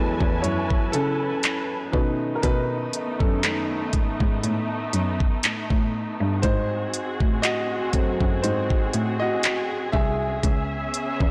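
A blown-out, overdriven recording in a small room carries this moody, late-night contemporary R&B fragment at 60 BPM with a gentle 16th-note swing, where a dark, boxy concert grand piano takes the solo over F#m11, B7, G#7b9 and C#m7 while veiled, con sordino strings pump against the sidechain, a single bowed cello with a reedy gut-string tone holds the bass, and an up-front electronic drum kit with knocking kick, smooth hats and handclaps enters at 0.2 seconds.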